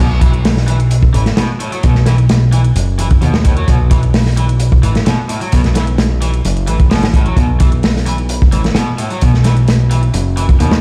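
Swaggering and funky, this breakbeat excerpt rides a straight 130 BPM groove over a single B7(no3) chord, cut from a longer piece. A fat, thick analog bass with a detuned sawtooth tone, fast attack and filter sweep sits up front beside a crunchy, saturated breakbeat kit with a tight kick and medium-tuned snare, its top rolled off, while a dry analog electronic hi-hat ticks in the background from 0.2 seconds. A bright, overdriven picked guitar riff, roughened by vintage 12-bit sampler grit and digital delay, runs throughout, and the whole mix sounds played on a big sound system in a bare stone room, with vinyl crackle on top.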